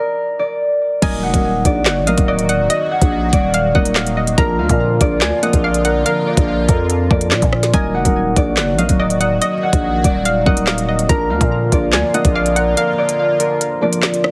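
A half-time drill groove at 143 BPM in 4/4 drives this ominous, cold hip hop cut from a longer piece, set in Eb harmonic minor and moving between Ebm and Bb. A mellow, fingerpicked concert harp carries the ringing melody up front, sounding alone in a brief break before the full arrangement arrives at 1.0 seconds, its notes trailed by tape echo. The overdriven electronic drill kit is pushed forward with a knocking kick, woody snare, crisp hats, handclaps, rim clicks and crash, beneath a growling, buzzy 808-style bass with a fast attack and decaying tail. A hollow, bouncy square-wave pluck adds a second line above the harp, thickened with chorus, ring modulation and tape echo, while a felt-muted upright piano supplies intimate, dark accompaniment with audible action noise and short sustain. A detuned, resonant sawtooth pad with a slow attack and chorus holds sustained chords underneath, and near 12.8 seconds the kick and bass drop away, leaving the remaining parts in a lightly reverberant, heavily compressed radio-style sound.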